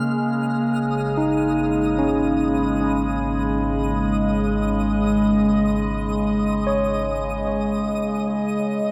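Peaceful and warm, this ambient passage floats in free time, cut from a longer piece and resting on a single A-flat minor chord for its 8.9 seconds. A warbly, tape-like pad sits up front with sustained, nostalgic lo-fi chords, its dark, full-bodied tone colored by chorus, phaser and its own reverb. A bright, barky tine electric piano traces clean arpeggios through tape echo, while a round analog bass holds the low end with a deep, dark sustain. Alongside them an overtone-sweeping drone glows with resonant, moving harmonics softened by chorus and reverb, and a faint granular texture adds a twinkling, octave-up shimmer high above. The whole mix sits in a vast, echoing space with a huge, wet reverb tail of 8.0 seconds.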